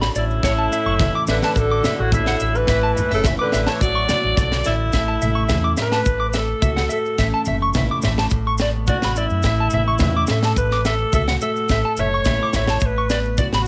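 Warm and joyful, this highlife guitar band groove at 107 BPM in A major sets a raspy, gritty alto saxophone melody with slapback echo up front over a picked acoustic guitar in the background, a slightly broken-up electric guitar playing arpeggios through lush chorus and slapback echo, a round, dark fingered bass, a tight funk kit with a high-tuned snare, grainy maracas and low-tuned, distant congas, while a clear, soft-attacked tenor saxophone adds a second line only until 4.6 seconds in this excerpt from a longer piece.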